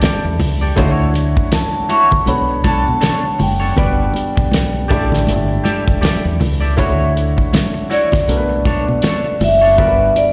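Lush 1970s-style soul at 80 BPM in D major with a swung sixteenth feel, this smooth excerpt of a live gig heard through the venue's PA in a reverberant recital hall sets a ringing, metallic vibraphone melody with slapback echo and analog delay over intimate grand piano chords with audible action noise, a bright, picked guitar riff with analog chorus, a damped 70s kit with a fat snare and tight kick up front, round, punchy fingered bass entering at 0.2 s, and thin-skinned congas tucked in the background, the harmony moving through A7sus4, Dmaj9, Bm9 and Gmaj7 twice.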